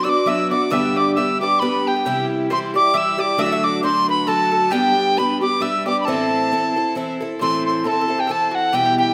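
Bathed in a wet recital-hall reverb, this spirited, dark and lively fragment of a Celtic folk waltz, with a gentle swing, sets an up-front tin whistle, reedy and chiffy with a soft attack, over a shimmering, octave-doubled picked twelve-string acoustic guitar with a boxy parlour tone and audible finger squeak, while a round, double-strung mandolin carries a second line, all three playing through the full 9.1 seconds as the chords move through Bm, G, C, D, G and Am before a new section arrives at 7.4 seconds.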